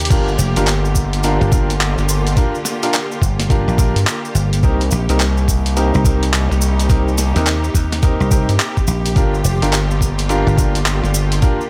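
A gritty, playful glitch hop excerpt opens on sustained chords from a rich, biting symphonic string section pumping under sidechain, over a dry, punchy thumbed slap bass, a boom bap sampler-style kit with its high-tuned snare, handclaps, hi-hat and crash, and a grainy cabasa, all moving with a swung 16th-note feel. A thumpy electronic kick and an aggressive, saturated synth bass with a resonant filter pluck join almost at once, sitting up front alongside the slap bass. Brilliant grand piano stabs, also pumping and trailed by dub echo, ring over chords that move from Gm7 to Cm7 at 4.6 seconds and back at 9.2 seconds, in a dry mix.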